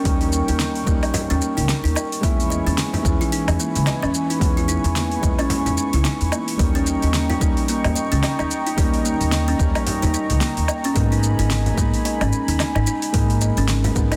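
A hypnotic organic downtempo groove at 110 BPM in Eb phrygian dominant opens with a felt-muted upright piano, soft and intimate with audible action noise, under a sustained analog pad of detuned, warbling sawtooth chords, both pumping with sidechain and the pad thickened by chorus, while a dry, close-miked kalimba rings out bright, hollow thumbnail-plucked arpeggios through a delay. A woody, dark pizzicato upright bass and an overdriven deep house drum kit with a fat snare, metallic hats, shaker and woodblock join almost at once, swung on the sixteenths and anchored by a punchy, overdriven electronic kick, with a soft-handed frame drum entering in the background at 1.1 s. The chords move from Eb7 to E6 and back before settling on Abmadd9 at 11.0 s in this dense, heavily limited cut from a longer piece, set in light reverb.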